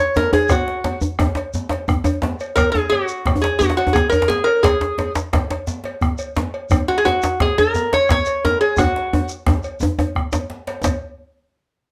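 Powerful and driving, this West African drum ensemble piece rolls along at 116 BPM in a straight 12/8, centred on F# major pentatonic and cut from a longer performance. Up front, a metal-body resonator slide guitar carries the melody between F#4 and C#5, its nasal, fingerpicked slide tone dressed in plate reverb until it drops out at 9.3 seconds. Beneath it, a round bombo anchors the ensemble alongside two djembes: one deep and struck with hard hands in a live room, the other medium-tuned and close, both buzzing with metal rattles. A grainy, mellow shekere sits close and dry, while a quieter cowbell adds a metallic edge. A drum fill runs from 8.8 to 10.8 seconds, leading into a brief new section, and the whole ensemble sits in a moderate studio reverb.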